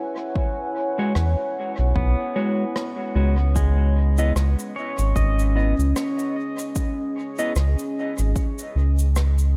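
Hazy and deep, this ambient dub excerpt at 75 BPM in C# minor, with a 57% swing on the 16ths, opens on a moody, detuned pad holding sustained chords from E69 to C#m9 with chorus and its own reverb, joined by an overdriven electronic kick re-recorded in a large room, clean, fingered electric guitar stabs with dub echo, a round, up-front analog bass from 1.2 seconds, brushed rim click and cabasa with dub echo, and bright, twangy pedal steel arpeggios under a low-pass filter and tape echo from 2.0 seconds, all set in light reverb.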